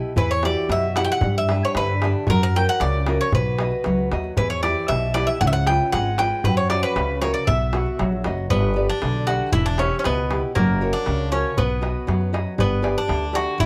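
Bittersweet and moody, this short Greek folk excerpt in 2/4 at 116 BPM, cut from a longer piece and speeding up throughout, sets a metallic, double-strung bouzouki melody up front over bright fingerpicked nylon-string guitar with audible finger squeak, a woody, thumpy pizzicato upright bass, and a crisp, saturated metal-shell darbuka, all in light reverb, as chords move from Emadd9 through G, F#, B and C#7 before a second section begins at 8.5 seconds.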